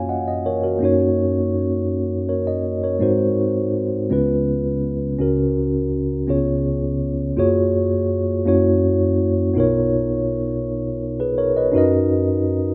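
Gospel in a steady 6/8, jubilant and hopeful, carried entirely by a solo tine electric piano that sits up front with a mellow, clean tone heard through built-in speakers. It spans low bass notes to upper voicings, moving through rich seventh and ninth chords before settling on a major sixth near 11.7 seconds. A lush hall reverb surrounds the rough home-demo sound of this short excerpt cut from a longer piece.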